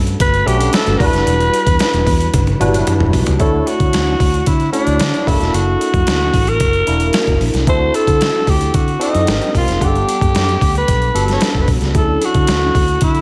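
A big arena sound fills this short cut from a longer piece, with a lush hall reverb giving the whole mix a polished glow. It is breezy, upbeat 1980s jazz-funk pop in D major at 112 BPM, moving in a straight 4/4 through rich chords such as Gmaj9#11, Em9, Dmaj9 and F#7alt. A growling alto saxophone carries the melody up front from 0.2 s, raspy and gritty with vibrato in a vintage pop solo style. Beneath it, a barky tine electric piano plays bright, lightly overdriven accompaniment through a combo amp, coloured by ensemble chorus and slapback echo. A dark, round, foam-muted fingered electric bass anchors the low end, while a compressed, pitched-down sampler-style boom bap kit sits up front with a thumpy kick, medium-tuned snare, hi-hat and toms. The kit plays a fill from 2.3 to 3.4 s, leading into the second section.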